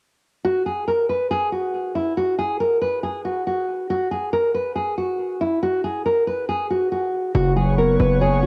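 Hazy and tape-worn, this dark, menacing half-time hip hop fragment sounds like a home cassette recording, with light reverb and a digital ambience. A full-bodied, fingerpicked nylon-string guitar carries the filtered melody up front from 0.4 seconds, and at 7.3 seconds a saturated, aggressive 808-style bass arrives on an F#sus4 chord alongside a mellow tine electric piano heard through built-in speakers. An airy, detuned analog pad with chorus follows at 7.4 seconds, holding sustained chords quietly in the background.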